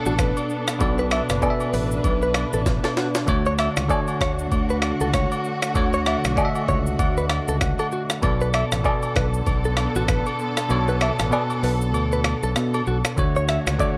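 A gritty, overdriven sampler-style drum kit sits up front in this joyful, romantic afrobeats cut at 97 BPM, its thumpy kick, high-tuned snare, snaps, rim clicks, shaker and hi-hat riding a swung sixteenth feel, with a fill at 2.7 seconds and the kick dropping out from 10.7 to 13.2 seconds. Fingered electric bass holds the low end while a bell-like tine electric piano plays accompaniment and takes a fill at 6.4 seconds, over lush, woody bowed strings sustaining chords that move between Bm7 and Dmaj7. A clean, scooped electric guitar picks a bright riff through tape echo, with agogo bells and woodblock adding light percussion in a dry, close mix taken from a longer piece.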